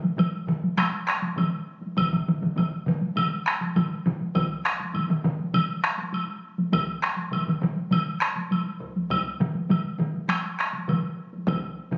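Japanese traditional taiko drumming, powerful and ceremonial, moves at a straight 101 BPM in 4/4 in this short passage cut from a longer piece. Several taiko ensemble parts layer together: heavy-stick drums sit up front in a live room while another heavy-stick group stays in the background, a hard-stick part has a vintage, band-limited tone up front, and one more hard-stick group joins at 2.0 seconds. A distant, woody woodblock rings in a large room, and the whole performance, captured on a phone in the room, carries moderate spring reverb and compression.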